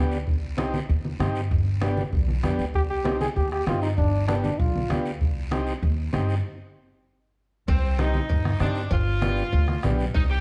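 A clear, punchy trombone sits up front, stepping out for a solo phrase at 2.8 s in this fiery, passionate cumbia at a brisk 194 BPM in C harmonic minor, over an overdriven, reedy combo organ with light vibrato and a woody pizzicato upright bass moving between C minor and G. Beneath them, a soft-beater bombo, a raspy guiro and damped, low-tuned congas in the background keep a straight 4/4 pulse, with a stop at 6.4 s. At 7.7 s a tight, distant saxophone section takes the melody with slapback echo, joined by ringing cowbell and timbales, all set in a dark production with a large studio reverb.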